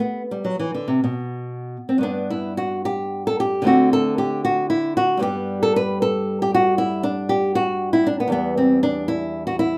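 Moving in a rubato 12/8 at roughly 68-80 BPM by the dotted quarter, this flowing, introspective baroque-style dance in G major is carried by a lone fingerpicked nylon-string guitar, its warm, small acoustic tone placed up front and ranging from E2 to B4. A brief opening phrase gives way at 2.0 seconds to a longer passage that moves from G through D5 and back to G before settling on E minor at 8.3 seconds. The sound has the rough character of a home demo, set in a wet small room, and the clip is cut from a longer piece.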